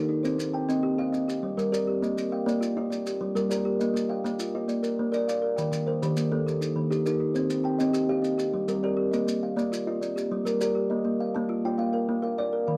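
A straight 12/8 pulse at 135 BPM drives this hypnotic southern African traditional excerpt in Bb major, where two up-front kalimbas ring out mbira-style interlocking arpeggios, one woody with a hollow, boxy tone and the other darker and smoother on a solid board, cycling through Cm, Gm, Bb and Eb over mellow, grainy maracas that drop out at 10.7 seconds, the recording wrapped in light reverb and the worn, warbling pitch drift of old cassette tape.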